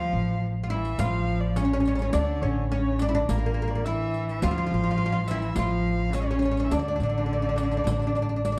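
A bright, plectrum-plucked oud carries the melody up front in this short, hypnotic Arabic maqam ensemble passage in D maqam nahawand, moving at 105 BPM in a straight 4/4 with a sense of longing. Around it, a distant bowed cello with portamento and a nasal, smooth violin with vibrato play second lines. A woody pizzicato upright bass holds the low end, and a close, dry riq with jingles enters at 0.8 seconds. Light reverb and a dark, warm production surround the ensemble, and a drum fill arrives at 8.4 seconds just before the cut.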